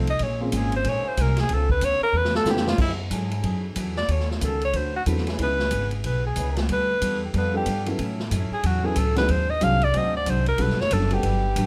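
Sultry and dramatic, this brisk big band swing excerpt in F# minor moves at 185 BPM, with a clear, up-front alto saxophone soloing throughout in a soft-attacked, vibrato-laden jazz voice over a woody pizzicato upright bass, a bright picked steel-string acoustic guitar and a distant, roomy drum kit whose boomy kick, snare, hi-hat, ride and crash drive the swing, with a drum fill from 2.1 to 2.8 seconds. A dark, intimate baby grand piano with audible action noise comps in short-sustained touches, dropping out briefly and returning at 5.1 seconds, while a cup-muted trombone section holds veiled, softly vibrating chords far in the background from 0.9 seconds. Light reverb surrounds the ensemble as the harmony winds through rich altered and extended chords such as Db7alt, G#7#11 and Gmaj7.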